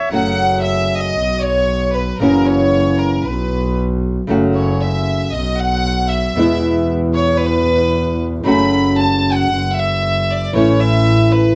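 This is a playful, passionate tango at 115 BPM in 4/4 with a rubato feel, tuned to A4 = 444 Hz and cut from a longer piece. From 0.1 seconds a bowed chamber violin section, up front, carries a solo line with a rich, reedy gut-string tone, light vibrato, a smooth top and a period-style character. Beneath it, a small, dark nylon-string guitar is fingerpicked as accompaniment, and a single bowed double bass adds a clear, earthy low end with light vibrato. The harmony moves from F#m through Badd9 and F#7, pauses on a brief N.C., and later passes through E, Dadd9/F# and A. The ensemble sits in a moderate large studio reverb and is captured with close, detailed microphones.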